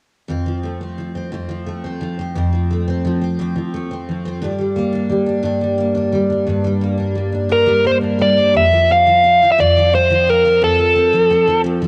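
A double-tracked, picked steel-string acoustic guitar opens this tender, swaying pop excerpt in F major at 58 BPM in 6/8, its bright, full-bodied jumbo tone carrying a finger squeak as it moves from F to Gm, before a dark, smooth overdriven electric lead guitar with analog delay enters at 7.5 seconds to sing the melody up front, all colored by cassette tape and light studio reverb in an intimate home recording.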